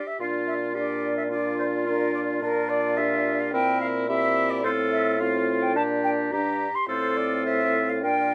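An airy concert flute carries the melody up front, its straight tone and soft attack giving a graceful, cheerful lift to this quick classical-period passage for wind quintet in F major. A bright, punchy clarinet supplies accompaniment from the start, and at 0.2 seconds the rest of the ensemble joins: a roomy oboe with light vibrato on a second line, a dark French horn with a smooth top, and a mellow bassoon holding the bass close to the front. The pulse sits around 108 BPM in 4/4, yet the phrasing is rubato, which lends the music a breathing quality. The harmony opens on Bb, passes through C7/Bb, and then moves between F/A and Gm/Bb. A moderate studio ambience surrounds the players, and the passage, cut from a longer piece, runs to 8.3 seconds.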